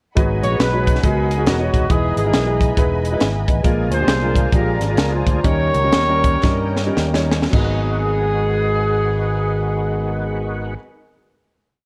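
A swung, driving two-beat praise groove from a crisp, punchy fusion kit propels this short, solemn and fervent uptempo gospel piece, with a fingered electric bass walking and running beneath, sliding through chromatic approach notes, while an intimate grand piano adds rhythmic chords and short fills, a gritty overdriven tonewheel organ holds chords through a slow rotary speaker, lush bowed strings pad the background, and a mellow, distant horn section states call-phrase motifs up front, until the tempo slows from 3.6 seconds, a drum fill leads into a final chord at 7.5 seconds, and the whole recording carries the worn, warbling pitch drift of old cassette tape in a small, lightly reverberant room.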